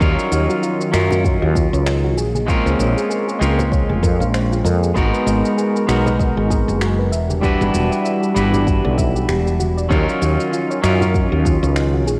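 A relaxed 97 BPM groove in 4/4 with a swung sixteenth feel carries this smooth sunset chillout excerpt, where a growly, up-front fretless bass and a deep electronic kick sit under bright picked clean guitar with tape echo, airy detuned pad chords with chorus and phaser, soft round arpeggiated plucks, layered shaker and finger snaps, and very quiet close congas entering at 1.1 seconds, all moving through D#m9, A#m9, G#m9 and Em9 with the hazy character of a home cassette recording.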